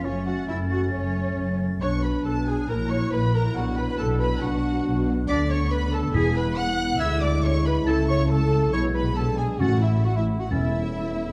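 A brief cut from a quick, graceful classical-period movement for symphony orchestra opens with the full ensemble sounding together, violins singing a lush, expressive melody high over a bed of woodwinds, horns and strings at 138 BPM with a rubato feel. Beneath the soft-attacked violin line, a second, very quiet violin section and a dark cor anglais add inner lines, while a dark clarinet and an airy, distant flute sit in the background. A smooth, even viola section supplies accompaniment, and a dark French horn section holds roomy, sustained chords from afar. The bass is carried by woody cellos and an up-front double bass section with expressive portamento, moving through minor harmonies before the music settles into a cheerful A major from 5.3 s. Crisp timpani struck with hard mallets enter at 6.1 s and return at 9.6 s as the phrase arrives on A. The whole piece sits in a reverberant recital hall with a dark, warm production.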